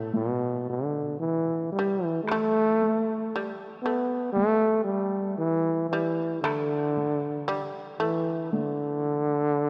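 A dark, punchy solo trombone sits up front with light vibrato and scooped notes over a buzzing, plectrum-plucked fretless shamisen and a compressed, saturated taiko ensemble struck with heavy sticks in the background, giving this calm, austere Japanese chamber excerpt, played rubato around 57 BPM in A suspended pentatonic, a cathedral-like reverb and the warbling pitch drift of worn cassette tape.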